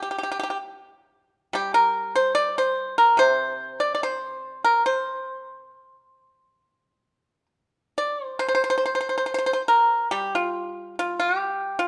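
A solo pipa opens at 0.0 seconds, its fingerpicked notes sounding percussive and up front in a flowing, pastoral piece of Chinese traditional music for plucked strings. The instrument's acoustic tone is warm yet dry at the source, while a moderate recital hall reverb of 1.4 seconds surrounds it with a sense of space. The playing moves freely in rubato, spanning a range from C3 up to D5. At 8.4 seconds the music moves into a new section that carries on until the recording ends at 11.9 seconds. This brief passage is cut from a longer piece.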